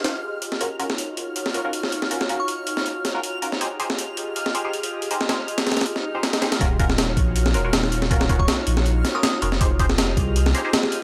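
This is a short cut from a dark, frenetic drum and bass track in the jungle vein, running at 160 BPM in Eb dorian with a light swing on the 16ths. A gritty, compressed sampler-style breakbeat kit sits up front throughout, pairing a thumpy kick with a high-tuned snare in a small room, while an airy, breathy pad holds sustained minor-ninth chords beneath a vintage 12-bit sampler crunch and chorus. Nasal, band-passed sawtooth chord stabs enter at 0.6 seconds, bright and short, colored by phaser and dub echo, and a reversed, granular texture hovers dreamily in the background on a single high note. A glassy FM bell makes brief crystalline appearances in the distance, and a very quiet electronic swell at 6.0 seconds leads into the drop at 6.6 seconds, where a deep, saturated sine sub bass arrives and sits heavy and up front in the mix. The overall sound is dry and gritty with light reverb, carrying a raw hardware character.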